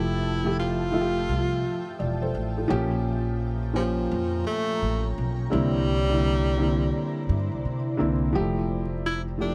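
Hip hop at 85 BPM in F major with a swung 16th-note feel, this short cut from a longer piece has a nostalgic, mellow mood, moving from Fmaj9 through Bbm6 and C9 before returning to Fmaj9 at 8.3 seconds. A breathy jazz tenor saxophone carries the solo melody up front with subtone, vibrato and scooped notes, over a soft felt-muted upright piano with cassette tape colouring and audible action noise, and a woody pizzicato upright bass. A cloudy, detuned granular pad with its own reverb holds bright, blurred sustained chords, while light reverb and vinyl crackle surround the whole mix.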